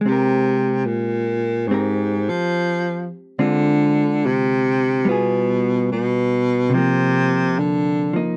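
A swung 4/4 at 72 BPM carries this smoky, wistful jazz fragment, cut from a longer piece. A vintage hollow-body electric guitar provides the accompaniment throughout, its clean, picked tone dark and compressed. Carrying the melody in its low register is a baritone saxophone, entering at 0.1 seconds, with a warm subtone, vibrato and scooped notes in a solo jazz style. The horn sits up front yet has a distant, roomy character. The harmony moves from Abmaj9 through Dm7b5 and G7b9 before settling on Cm7 at 6.7 seconds. A light reverb colours a dry, close, 1970s-style studio sound.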